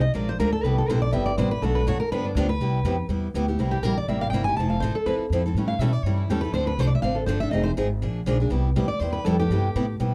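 Swinging in 4/4 at a brisk 244 BPM, this charming, lively snippet of acoustic string swing in C major sets a bright dreadnought guitar with fresh strings on a picked solo line over a second picked concert guitar supplying accompaniment and a woody, thumpy pizzicato upright bass with gut strings, all three up front in a dark production with light reverb.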